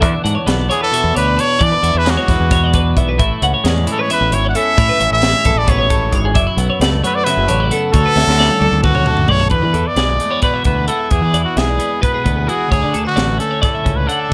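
Dry and close, this bright, playful math rock and midwest emo passage in 7/8 at 265 BPM sets a brilliant, forceful trumpet melody with light vibrato and scooped notes up front from 0.7 seconds, over two clean, compressed twelve-string electric guitars (one warm with subtle chorus on high arpeggios, the other twangy in lower accompaniment), a growling overdriven fingered bass, and a crisp, airy fusion kit with a high-tuned snare and punchy kick that plays a fill from 8.2 seconds into a second section at 9.5 seconds.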